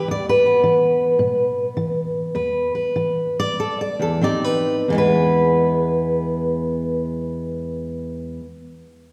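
A fingerpicked steel-string acoustic guitar plays alone and up front in this swaggering, rollicking acoustic country blues fragment in E mixolydian, swung in 4/4 at 88-108 BPM, slowing down through its first 4.9 seconds as it moves from E5 to Fsus2 before settling on E, all bathed in a wet church reverb that gives it an auditorium-sized glow.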